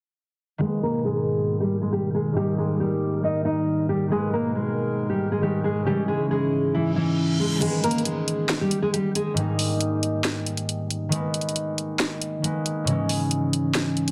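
This hip hop and trap excerpt, in a half-time feel, sets a melancholic, menacing mood. From 0.6 seconds, a fingerpicked nylon-string guitar carries the melody with a full-bodied, deep classical tone, softened by a low-pass filter and trailed by tape echo. A thumb-plucked concert harp rings beneath it in accompaniment, while a hollow, flute-like pad holds dark, airy chords treated with chorus as a filter sweep runs through the opening section. A reverse cymbal leads into the second section at 7.6 seconds, where the overdriven trap kit arrives up front with a sharp snare, bright hi-hats, handclaps and crash. The guitar drops out at 9.3 seconds, leaving the harp and drums to finish in a lightly reverberant, dense and heavily limited modern mix.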